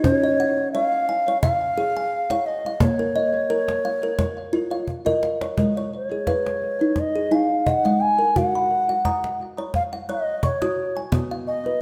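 World meditative music with tuned percussion at 87 BPM in 4/4 with a light sixteenth-note swing, cut from a longer piece and hypnotic in mood, where an up-front bass bansuri carries a pure, bamboo-toned melody with soft attack over woody, hollow-box kalimba arpeggios touched by tape echo and a hard-handed cajon with faint snares, all set in a wet echo-chamber reverb with small-room ambience, moving through chords from Db to Bbm before shifting at 5.6 seconds, just after a drum fill, toward Abm, Gb and B.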